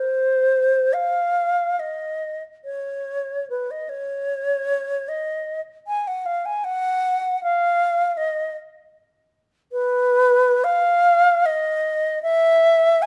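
Classical and expressive, this meditative, lonely passage from a longer piece features an unaccompanied alto flute in a free, rubato triple metre, its airy, vibrato-tinged tone with soft attacks sitting up front yet sounding distant within a moderate stone-room reverb.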